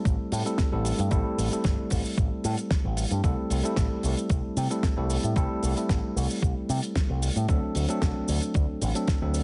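Sleek and sensual, this 113 BPM nu-disco excerpt in straight 4/4 sets a bright, clean tine electric piano with delay over an up-front picked electric bass with envelope filter and sidechain pumping, a thumpy, tape-warm electronic kick and a dry, damped 70s kit with fat snare, hi-hat and cabasa in studio reverb, all moving through Am7, C6 and D7 in a small room under a heavily compressed, radio-like sound.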